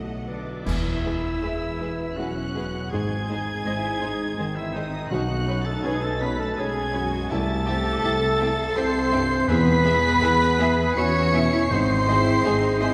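Cinematic, emotional film score for full orchestra in E major, uplifting and moving, unfolding at a rubato 82 BPM in 3/4 within a longer piece. A lush, vibrato-rich violin section carries the high melody over a second violin line, very quiet violas, a rich bowed cello and double bass foundation, and a dark, deep concert grand in the background, while a mellow horn section holds sustained chords and an airy flute section, a clear clarinet and a distant oboe weave supporting lines. Dark clash cymbals and concert bass drum strike an up-front accent at 0.7 seconds, very quiet hard-mallet timpani appear from 5.1 to 10.6 seconds, and a wet concert hall reverb surrounds the ensemble.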